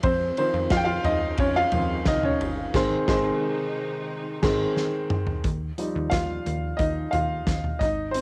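A woody, vintage upright piano carries this bittersweet, driving piano-pop excerpt from a home cassette recording, taking solo lines with plate reverb and tape grain over a punchy, plucky analog bass, a loose acoustic drum kit with dark cymbals, a fat snare and a tight kick, and very quiet, lush bowed strings that hold sustained chords until 5.4 s, while the band hits an accent from 2.7 s and the drums play a fill at 4.8 s.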